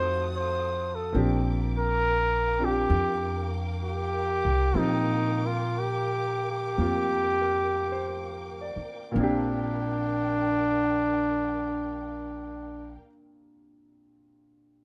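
A gently swung 4/4 pulse in the 46-70 BPM range eases into this romantic, tender jazz ballad in Bb major, and the tempo slows between 1.1 and 9.2 seconds. An F7b9 chord opens the passage and resolves to Bb6, setting a soft, tender tone. Up front, a mellow, breathy solo trumpet carries the melody with scooped notes, while a woody, thumpy upright bass plucks dark gut strings underneath. A clear concert grand piano with deep bass and short sustain supplies the accompaniment, and a warm studio string section holds bowed, expressive chords with vibrato and portamento. Light reverb surrounds the ensemble, and the piano carries on alone after 13.0 seconds in this fragment cut from a longer piece.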